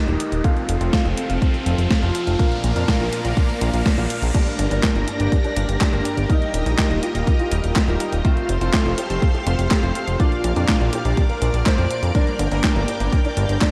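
A straight pulse from a punchy, up-front electronic kick and an overdriven, gated 80s digital drum machine with gated-reverb snare, handclaps, hi-hat and crash drives this romantic, sunny italo disco fragment, where a fat, saturated analog bass, glossy stabs from a chorused polysynth with tape echo, and lush sustained string-machine chords both sweeping through a filter under an electronic riser until 4.3 seconds, when a dark, boxy concert grand piano enters with the melody, all set in a dreamy mix soaked in huge ambient reverb.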